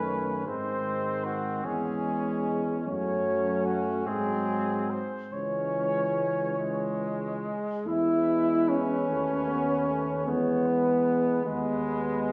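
In a slow, rubato 6/8 that moves at about 45-51 beats per minute in dotted quarters, this short classical brass quintet passage from a longer piece unfolds with a solemn, heroic bearing. The cornet carries the melody with a mellow tone and light vibrato, while the trumpet sings a second line beneath it, sounding distant and roomy. A clear, present trombone and a French horn, the most prominent voice in the blend, fill in the accompanying harmony, and a warm, vintage-toned tuba anchors the bass. The harmony begins in C# minor and turns toward E major at 7.9 s, giving the closing moments a brighter, more resolved lift before the cut at 12.3 s. A wet recital-hall reverb from a church or concert hall setting surrounds the ensemble, lending the cornet, trumpet and horn a soft, faraway glow.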